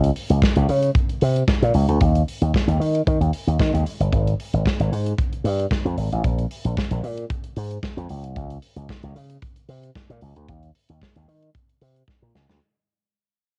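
A bright, punchy slap bass run through an envelope filter sits up front in this celebratory, danceable disco excerpt, alongside a mid-forward studio drum kit with a firm kick, medium-tuned snare and hi-hat carrying a cassette tape character, all captured dry in a home cassette recording that fades out across its length, closing with a drum fill at 12.1 seconds.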